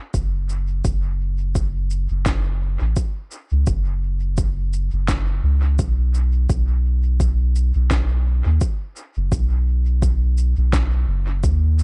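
A swung 4/4 groove at 85 BPM, with its sixteenths pushed at 57% swing, carries this hazy, meditative ambient dub excerpt, cut from a longer piece and tuned to A4 = 439 Hz. Up front sit a deep, layered electronic kick, overdriven and re-recorded in a small room, and a round, soft sub bass of triangle and square waves that sustains between F#1 and D#2. Behind them, an electronic shaker and woody snare trail dub echo through a dark production with little reverb, and every part plays from 0.1 seconds to nearly the end.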